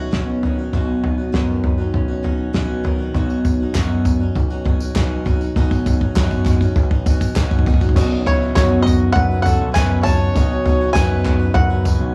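Two acoustic guitars open this uplifting indie folk excerpt at 100 BPM in a straight 4/4, a dark, full-bodied fingerpicked dreadnought sitting in the background until 3.1 seconds while a bright, boxy swing-style guitar carries on with audible finger squeak. A punchy, direct electric bass and a loose indie drum kit with a fat snare, tight kick, toms, crash and a rolled-off top drive the build-up, the drums up front and filling through the opening stretch over a Badd9 chord. A jingly tambourine and a crisp group handclap, set distant in a large room, join in the background. Just before the new section at 8.0 seconds a soft, felt-muted upright piano enters, and a very quiet, flute-like tonewheel organ with key click and slow rotary speaker follows on the downbeat, the two adding intimate support as the arrangement blooms, while a twangy, percussive bluegrass banjo takes the melody through analog delay. 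A close-miked trumpet with light vibrato and a classical touch plays a second line, also through delay. The whole has the homespun grain of a cassette recording in a small room, with tape colouring the guitars, drums and trumpet.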